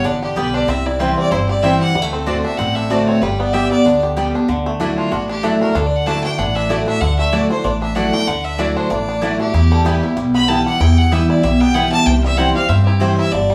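A swung 190 BPM drive in 4/4 carries this lively, virtuosic bluegrass passage, cut from a longer piece, with a pizzicato upright bass holding the low end under a bright, full-bodied picked dreadnought guitar and a twangy, percussive banjo spinning arpeggios. Up front, a clear, earthy bowed fiddle with a smooth top takes the melody, while a woody, double-strung mandolin adds stabs from 0.4 s, and a metallic, nasal lap resonator guitar played with slide and fingerpicks slips in a brief second line in the background around 9.7 s. The band sounds live in one studio room with a short, wet ambience, the harmony moving through G, C and D7 and back to G before shifting to Dadd9, Em and C in the second section at 4.5 s.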